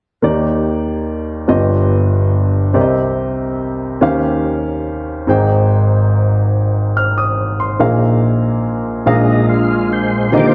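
Gospel in a soulful, uplifting 6/8 at 48 BPM in Eb major, cut from a longer piece, where a clear, woody upright piano carries the accompaniment up front through rich chords like Ebmaj7, G7b13 and Abmaj7, a thick, lightly overdriven tonewheel organ with key click, chorus vibrato and slow rotary speaker joins with sustained chords at 9.1 seconds, and a dark, distant French horn section adds a soft-attack chord at 10.3 seconds, all set in a wet large-studio reverb with a dark, warm production.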